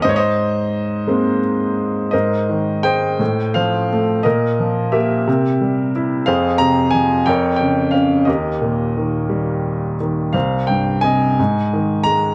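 A clear baby grand piano opens this short lyrical classical passage, cut from a longer piece, playing alone from the first moment to its close at 12.3 seconds. The mood is calm and tender, with a 6/8 metre shaped by free, rubato timing. The instrument sits up front and sounds intimate and natural, with a long sustain and the mechanical noise of its action clearly audible. Its range stretches from C2 in the bass up to Bb5, and the harmony moves through rich, tender chords, from an opening Abadd9 through Fm and Eb before settling on an open Ab5 near 11.4 seconds. A moderate spring reverb surrounds the playing, and after a brief opening phrase, a longer second section begins at 2.1 seconds.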